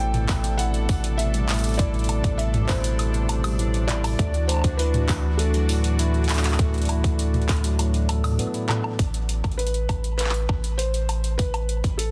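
A dense, heavily limited and dry mix opens this cerebral, glitchy IDM excerpt at 100 BPM in A dorian, where a soft, felt-muted upright piano with audible action noise, 12-bit sampler grit and digital delay carries the melody over a round sine sub bass with tube saturation, a detuned sawtooth pad with chorus, clean tine electric piano arpeggios through a combo amp with delay, and a bubbling, resonant stepped-filter texture pumping in the background, while a tight electronic kick joins a booming analog drum machine with metallic hats, handclaps, toms and woodblock, and after a short break at 8.4 s the pad, electric piano and texture drop away by 9.0 s, leaving piano, bass and drums over an Asus2 chord.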